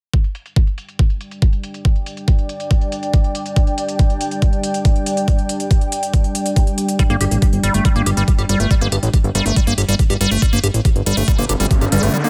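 Intense and alien, this psychedelic trance excerpt opens on a knocking, up-front electronic kick and crisp, tape-toned hi-hats, the hats low-pass filtered and set in a large room, while a deep, moody ambient pad enters at 1.4 s with chorus, reverb and sidechain pumping. At 7.0 s a squelchy, resonant liquid acid bass arrives with phaser, delay and its own pumping, joined by a fat, nasal analog bass thickened with tube saturation. A background riser appears at 11.3 s as the passage closes.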